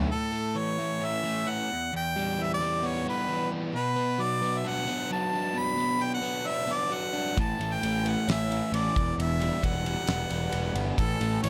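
A clear, close-miked harmonica with light vibrato, scooped notes and slapback echo carries the melody over a bright, double-tracked overdriven guitar riff in this swaggering, confident half-time classic rock excerpt. A punchy fuzz bass sounds briefly at the very start and returns at 7.4 seconds alongside a dry, polished 70s drum kit (fat snare, tight kick, dark ride cymbal), all in a small room.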